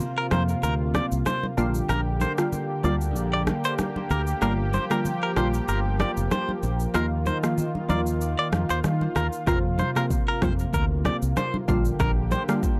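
A lush, warbling unison pad with chorus and sidechain pumping opens this romantic, joyful afrobeats excerpt alongside an electronic kit of deep kick, rim click and shaker and damped, hard-handed congas in the background, then a bright, twangy clean electric guitar riff with harmonic tremolo and analog delay enters at 0.2 seconds, followed at 0.3 seconds by a glassy, crystalline wavetable pluck with chorus and filter sweep and an up-front fingered electric bass, moving through swung sixteenths and suspended and sixth chords in a dry, gritty recording with light reverb.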